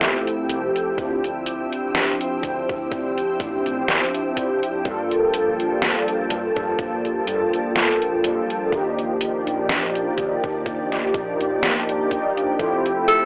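Heard through a muffled, telephone-thin filter and the softened grain of a home cassette, this short vaporwave fragment sits in a modest small room and feels nostalgic and faded, with a light swing in its slow 4/4 pulse. Up front, a mellow synth brass carries the accompaniment in a round, brassy, detuned tone with vibrato, a filter sweep and a touch of ring modulation, blurred further by analog chorus and tape echo. Behind it, a soft string machine holds silky, vintage chords that bloom slowly and linger, while a detuned 8-bit drum machine ticks out hi-hat and a medium-tuned snare close to the ear. A thumpy electronic kick joins at 1.0 s, and a woody fretless bass stays deep in the background with a dark, growly, hollow-body roundness. The harmony drifts from Fmaj9 through Dm11, Gm9 and Ebmaj9 before settling back on Fmaj9, and at 13.1 s a warm, distant alto saxophone with jazz vibrato steps forward for a single solo note just as the passage cuts off.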